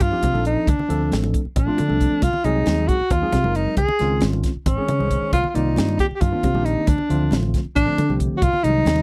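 Up front, a tenor saxophone solos in jazz style with vibrato and scooped notes, its smooth top touched by slapback echo, in this funky, driving electric jazz fusion excerpt in 7/8 with a straight feel. Beneath it sit a bright, punchy fretless electric bass with ensemble chorus, a tight funk kit with a high-tuned snare, and damped, thin-skinned congas in the background, over chords such as Cm11, Dm7, Ab7/C and Dbmaj9, while a clean tine electric piano enters at 0.1 seconds through its built-in speakers. The sound is dry and close, like a 1970s studio session, with little reverb.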